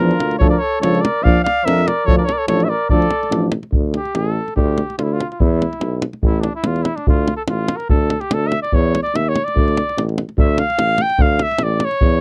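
A dry, close studio sound in a 1970s style frames this restless, virtuosic Balkan brass band fragment in D harmonic minor, moving at 144 BPM in a swung 2/4. A punchy cornet carries the melody up front over a clear, vintage tuba bass and a tight davul, while a dark trumpet's second line, a euphonium with light vibrato and a warm trombone in the background fill out the opening until 3.5 s. From 3.7 s the cornet takes a solo over tuba and davul as the harmony shifts through D5, E5 and A5 chords to a C#madd9.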